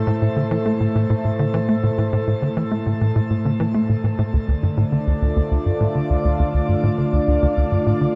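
A straight 4/4 pulse at 102 BPM drives this hypnotic, expansive excerpt of sequencer-driven ambient space music in A minor, where a tight, punchy sequencer bass riff with a dark, plucky sawtooth bite plays under a sweeping, bright detuned pad holding sustained chords, both up front, before the harmony moves to D minor at 4.3 s and a bubbling stepped-filter texture with random resonant steps enters at 4.6 s, all set in a moderate shimmer reverb with a long 8.3 s tail.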